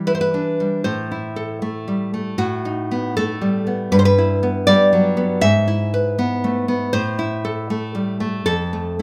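Passionate and intimate, this short excerpt of a romantic piece for solo classical guitar moves at a rubato 79 BPM in 2/4, with an up-front, warm, fingerpicked nylon-string guitar spanning F2 to E5 through chords like Em, Am and B7/A in E minor before turning to A minor at 5.4 s, all set in a moderate recital hall reverb.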